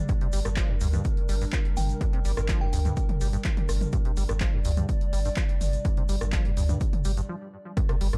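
Acid house with a raw, gritty mood, cut from a longer piece, where an up-front overdriven kick and a punchy analog drum machine with handclaps, hi-hat, rim click and toms drive a squelchy, resonant acid bass riff under a filter sweep, a deep, thick sub bass and a sidechain-pumped, nostalgic lo-fi pad of detuned sustained chords, while a grainy egg shaker sits in the background, a crystalline synth bell chimes from 1.8 to 2.8 seconds, and a short break arrives at 7.3 seconds.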